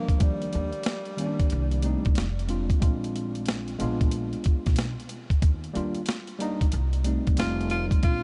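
Swung 16ths at 92 BPM in 4/4 drive this nocturnal, smoky jazz-hop fragment, where a gritty, compressed, pitched-down boom bap kit with a thumpy kick and high-tuned snare sits up front over a woody pizzicato upright bass and a worn, slightly out-of-tune mellow tine electric piano moving through Ebmaj7, Cm9 and Bb7b9 changes, while a breathy tenor saxophone with vibrato, scooped notes and tape echo offers brief jazz phrases at 0.0 and 7.4 seconds, all set in a small room with light reverb and a dusky, rolled-off top.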